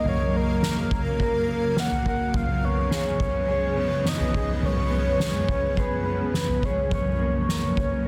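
A soft, octave-layered synth lead opens this blissful, floating dream pop excerpt in F# major, playing over a granular cloud pad and a mellow electric guitar, all sounding together from the very start at a straight 105 BPM in 4/4. The lead carries the melody with a round, up-front tone, touched by vibrato, chorus and tape echo. Beneath it, the pad holds sustained chords in a cloudy, evolving haze with its own built-in reverb. The guitar plays clean, dark, fingered arpeggios, thickened by ensemble chorus and tape echo. A soft-mallet acoustic drum kit enters at 0.1 s with a boomy kick, a fat snare and toms, sitting up front in a big room. The harmony moves from F#maj7 to C#7/F# and back to F#maj7 at 6.9 s, all bathed in a lush hall reverb and a dense, heavily limited modern master.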